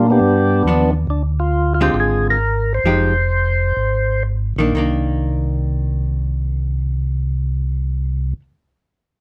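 Soulful and bluesy, this short excerpt from a longer soul jazz organ trio piece moves with a swung feel in 4/4. A percussive tonewheel organ carries the melody from the start until 4.2 seconds, its full, clean tone marked by second-harmonic percussion, key click and a slow rotary speaker. Beneath it, a second tonewheel organ plays the bass line throughout with a mellow, round and dark sound, colored by chorus vibrato, key click and its own slow rotary speaker. An amplified archtop guitar enters at 0.7 seconds to accompany with a picked, compressed, hollow-body tone that sits up front alongside the organs. The tempo slows through the middle stretch as the harmony moves from G7 through Dm7b5 and Fm9 to settle on Cm9, all inside a light reverb.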